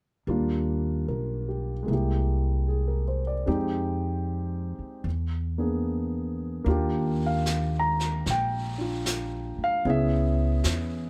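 A lazy swing on the eighth notes carries this romantic, intimate jazz ballad in 4/4, cut from a longer piece and recorded close and dry so every detail sits near the ear. A dark, mellow grand piano with deep bass and audible action noise plays the accompaniment over a woody, growly plucked upright bass, moving through chords such as Ebmaj7, C7b13 and E7#11. At 6.7 seconds, a vintage brush kit joins softly on snare and hi-hat with a rolled-off top as the harmony opens onto Ebmaj9.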